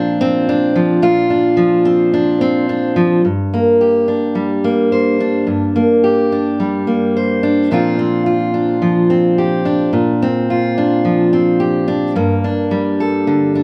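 Nostalgic and anthemic, this short folk excerpt at 108 BPM features a lone fingerpicked steel-string acoustic guitar, full-bodied and warm with fresh strings, sitting up front in a moderate studio reverb as it moves from Bbadd9 through Gm and back before landing on a Gmadd9 at 12.2 seconds and building to the end.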